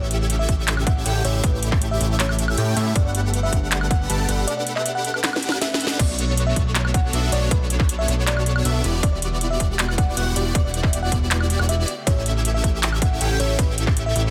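An emotional, bittersweet future bass passage in half-time at 158 BPM opens with everything but the drums at once: huge, lush supersaw chords pumping over a fat analog bass, a sparkling, bell-like FM electric piano melody with chorus, tremolo and digital delay, dreamy arpeggios from an airy, soft lead, and a distant, very quiet symphonic string section holding bright sustained chords. A trap kit with a sharp snare, metallic hats, handclaps, woodblock and cymbals arrives at 0.1 s, and an overdriven, hard-clipped electronic kick sits up front from 0.5 s, with a drum fill from 5.2 to 6.0 s. The harmony moves through A7, Gmaj9, Bm9 and Em9 before returning to A7, in a dense, heavily limited mix with little reverb.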